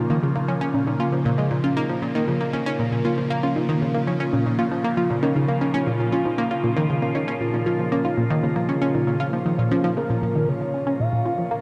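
Drenched in a huge, dark ambient reverb, this hypnotic, expansive stretch of sequencer-driven space music moves at 117 BPM in Bb minor, cut from a longer piece. A bright, morphing wavetable pad with phaser and shimmer sustains chords up front while a detuned, wave-folded analog pluck repeats a riff and a gentle, full-bodied pluck traces arpeggios in the background, both glistening with chorus and delay. At 10.0 s the arpeggios stop and a round, octave-layered synth lead with vibrato takes up the melody.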